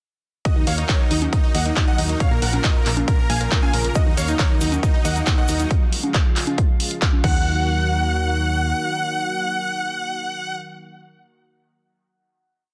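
A driving, bittersweet uplifting trance piece in Eb minor at 137 BPM opens at 0.5 seconds straight into the drop, where a huge, detuned supersaw riff in thirds and sixths pumps with sidechain and delay over a pedal note, doubled very quietly in unison by a dark, mellow grand piano with audible action noise, above a lush, warbling pad, a faint step-sequenced pluck, a round off-beat FM bass, a punchy four-on-the-floor kick, drum-machine congas, claps, hats and crash, and a grainy hand-played cabasa that appears briefly at 4.0 seconds, the chords moving Ebm, Bbm, Ebm, Db and back to Ebm before the drums fall away at 7.3 seconds and a final hit rings out in light reverb through a dense, heavily limited master.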